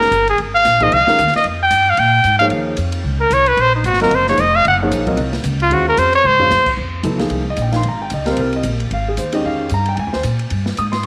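A clear, forceful trumpet with vibrato and a smooth top sits up front with a slapback echo, soloing from 0.0 to 6.7 seconds in this spiritual, intense modal jazz excerpt in F minor at 225 BPM, swung in 4/4 and tuned to A4 = 436 Hz. Beneath it, a warm grand piano moves between Fm11 and Ebm11, while a woody, thumpy pizzicato upright bass on gut strings holds the low end. An airy, polished acoustic drum kit with dark cymbals, a medium-tuned snare and a boomy kick plays a fill at 6.2 seconds, all set in a moderate echo chamber reverb.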